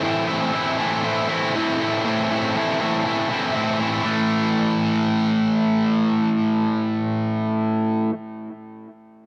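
In a straight 4/4 feel, this brooding yet cathartic rock fragment, cut from a longer piece, features a sludgy, bright electric guitar playing alone from 0.0 to 8.1 s, picked and double-tracked up front with overdrive, cassette tape grit and analog delay, moving from an Am chord to an A5 at 4.1 s within a damp booth ambience captured as a home cassette recording.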